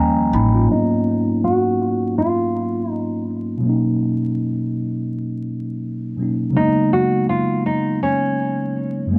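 Vinyl crackle and a wet small-room reverb give this hip hop fragment, cut from a longer piece, a hazy, nostalgic cast. A mellow tine electric piano sits up front through the whole clip, its clean tone run through cassette tape and a low-pass filter as it carries the chords from D#9 to G#m11, Bmaj7 and C#13sus4. A woody, thumpy pizzicato upright bass on steel strings sounds only in the opening 0.7 s, and at that point a fingerpicked nylon-string guitar takes up the melody. The guitar is full-bodied and classical in tone, placed up front, softened by its own low-pass filter and trailed by tape echo. A filter sweep runs from 0.7 s to the end, while a light 16th-note swing keeps the groove relaxed.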